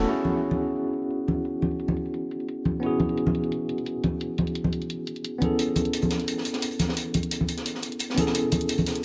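A bright, clean tine electric piano sits up front through a combo amp, its medium tremolo and tape echo colouring a move from E6/9 to Amaj9 around 5.4 seconds in this dreamy, lush liquid drum and bass excerpt. Close, saturated congas played with soft hands run alongside a layered electronic hi-hat that carries a filter sweep throughout. At 5.6 seconds a crunchy, gritty breakbeat kit with a high-tuned snare and rolled-off top joins, all set in a lush hall reverb with lossy compression artefacts.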